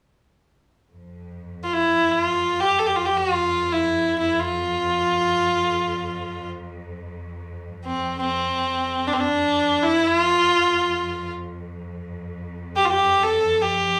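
Arabic maqam ensemble music in free time, stately and festive, where a bright, lush cello section holds a low drone from 0.9 seconds and a single up-front violin enters at 1.6 seconds with a nasal, intense melody carried by light vibrato and an airy bow, the players heard together live in a small room with a wet, short reverb, in what sounds cut from a longer piece.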